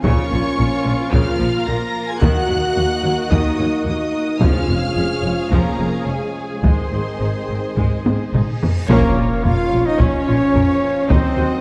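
A taiko ensemble struck with hard sticks drives this epic, heroic orchestral film cue in Bb minor at 109 BPM, where intense, distant violins carry the melody and a second line over a lush viola section, mellow French horn chords, a quiet dark trombone section, smooth-topped background strings and a bass of close cello and background double bass sections, with a brief hard-mallet timpani hit at 4.4 seconds, a drum fill leading to a reverse cymbal and huge impact, and an airy flute and warm trumpet stabs joining at 8.9 seconds in a moderate scoring-stage reverb.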